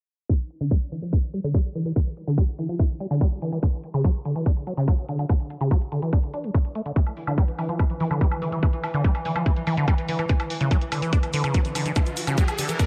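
Hypnotic and psychedelic, this psychedelic trance clip at 144 BPM in a straight 4/4 drives on a tight, overdriven electronic kick up front and layered, overdriven electronic hi-hat and woodblock under a filter sweep, while a squelchy, resonant sawtooth acid bass riff with phaser, digital delay and sidechain pumping sweeps through Dsus2 and D5; a detuned, chorused pulsing gated texture and a grainy, close and dry cabasa in the background join at 7.0 seconds, and an electronic riser arrives at 11.3 seconds.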